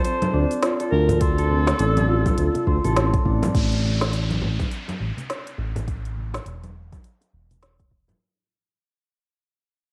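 A smooth, mellow synth bass with vibrato sits up front in this warm, mystical organic downtempo piece, cut from a longer work, alongside a subtoned, jazz-style clarinet solo carrying 12-bit sampler grit, cassette tape and tape echo that plays only until 3.0 seconds, while a ringing, thumb-plucked concert harp plays arpeggios until 6.1 seconds. Beneath them, a swung organic electronic drum kit with woody snare and crisp hats, a deep, overdriven electronic kick entering at 1.2 seconds, and soft-handed congas and bongos in the background keep the groove. An electronic downlifter arrives at 3.5 seconds as the piece fades out, all with a light reverb and a homemade cassette character.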